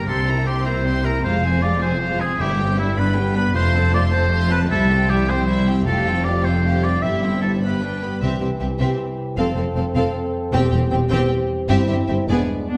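Lush, vibrato-rich violins carry the melody over a second violin line, a clear, distant oboe, smooth violas, ringing harp arpeggios and a bowed cello and double bass foundation in this triumphant, adventurous heroic film-score excerpt in 6/8, with a soft, round timpani touch at 2.4 seconds, a vintage French horn section entering with sustained chords at 8.2 seconds, and a mellow clarinet appearing only at 12.7 seconds, set in a recital-hall reverb.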